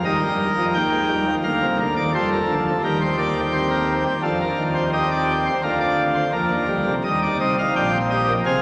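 This is a baroque-style classical fugue in four voices for solo pipe organ, a short passage cut from a longer piece that feels both driving and contemplative. The organ speaks with a full principal chorus in a baroque voicing, its pipes carrying a clear chiff at the start of each note, and it sits up front in the sound. The parts span from deep pedal tones up into a bright treble, moving in a steady, even 4/4 over harmonies that pass through Eb, Bb, Cm7/Eb, F7 and Bb/D. At 7.0 seconds the music moves into a new section settling on C minor before the passage ends at 8.6 seconds. A long, wet cathedral reverb surrounds the instrument, and a touch of tube saturation adds grit and body to the tone.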